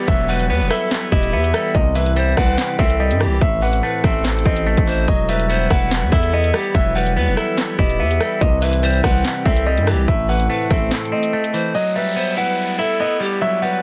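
A downlifter opens this tense, cold half-time drill excerpt alongside a breathy, reedy pan flute line with tape echo, a twangy clean electric guitar and a warbling lo-fi pad in the background, before a dark, mellow grand piano melody, a heavy distorted 808-style bass and an up-front drill kit with a hard-clipped kick, sharp snare, hi-hats, handclaps and rim clicks join in a dense, dry mix, the bass and kick dropping out at 10.9 seconds and the drums stopping at 11.6 seconds as the downlifter returns at 11.7 seconds under a closing stretch of flute, guitar and piano.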